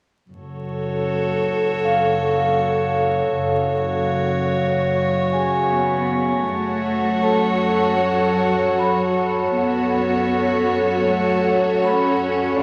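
Cinematic and mysterious, this tense passage, cut from a longer piece, moves at an unhurried straight pulse over a single F# minor chord. An evolving, morphing wavetable pad sits up front from 0.3 seconds, its detuned triangle tone with chorus and built-in reverb holding sustained chords, while bowed double bass and cello sections play the bass, the basses rich and floating, the cellos warm and set in the background, both sul tasto. At 1.8 seconds a vibraphone with medium hard mallets enters for texture, its metallic, ringing tone carrying a slow motor vibrato. From 6.5 seconds a dark violin section adds a second line, intimate and close with light vibrato and a soft attack. The whole sits in a scoring stage reverb under a layer of vinyl crackle.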